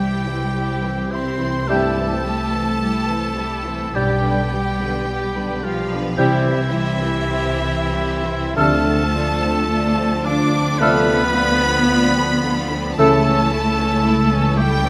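A rich, lush orchestral sound sits in a moderate concert hall reverb, giving this short classical excerpt in C major an elegiac, melancholic air at a slow, rubato pulse of about 45-57 BPM in 4/4. A rich violin section carries the melody with vibrato and a smooth top. It is joined from the start by a clear oboe and a second, more distant violin section on supporting lines, with an expressive viola section using portamento as accompaniment. A ringing concert harp plays arpeggios in the background, while a focused double bass section and a cello section hold the bass. At 1.7 s the winds and brass enter: a pure flute and a very quiet dark clarinet add further lines, a bassoon accompanies, a mellow French horn section and a dark trombone section sustain chords, and a vintage-toned trumpet adds stabs. These parts fall away by about 13.5 s, and the harmony moves from C through G/B and Dm7 to close on A/C#.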